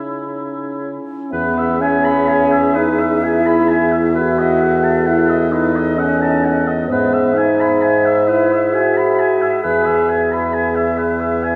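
Classical chamber music for wind quintet, this slow romantic movement in 6/8 unfolds with a flexible rubato feel and a yearning, elegiac mood. The dark bassoon sits up front and close-miked at the bottom, while a distant, roomy French horn and a very quiet, warm clarinet fill out the accompaniment, and a mellow oboe with light vibrato carries a punchy second line. At 1.3 seconds the hollow concert flute enters with the melody, its pure, close-miked tone shaded by vibrato and tongued notes, hovering in a narrow upper register. The horn drops out at 10.5 seconds as the harmony, which opened on a minor chord, comes to rest on its home chord. A wet church reverb with a long tail surrounds the ensemble, giving this short passage, cut from a longer piece, a spacious setting.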